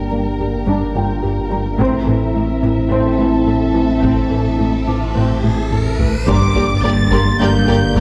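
Tense and vast, this cinematic fragment of a hybrid orchestral and electronic film score sets lush, vibrato-rich violins on a high melody and a smooth second line over background viola accompaniment, a quiet rich cello section, distant, mellow French horn chords and warm trombone chords, a deep sine-based sub bass, a rubbery wave-folded square bass riff, a dark tine-like synth pluck arpeggio and a muted felt upright piano with delay. A close, dry taiko ensemble enters at 1.8 seconds, and an electronic riser from 3.7 seconds leads to an impact at 6.3 seconds, where a soft-edged double bass section joins, all within a reverberant recital hall.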